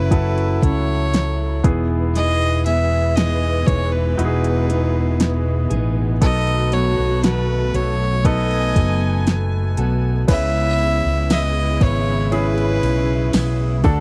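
Overdriven, up-front electronic drums with a fat snare and metallic hats anchor this tender, emotional pop ballad excerpt alongside a round, punchy fretless bass with lush chorus, a nasal, airy-bowed fiddle melody with slapback echo, an intimate grand piano with audible action noise, a woody string section and fingerpicked dreadnought guitar in the background, and a jingly, vintage tambourine arriving at 11.3 seconds, all in a dry, close 1970s-style studio sound.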